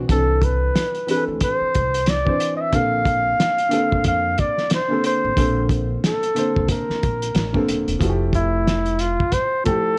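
Worn, warbling cassette tape and light reverb wrap this relaxed, smooth jazz-hop excerpt with its loose sixteenth-note swing, where a mellow flugelhorn with vibrato carries the melody up front and takes a solo at 8.0 seconds over a dark, boxy upright piano, a woody pizzicato upright bass and a muffled, cloth-damped drum kit with a fat snare and tight kick.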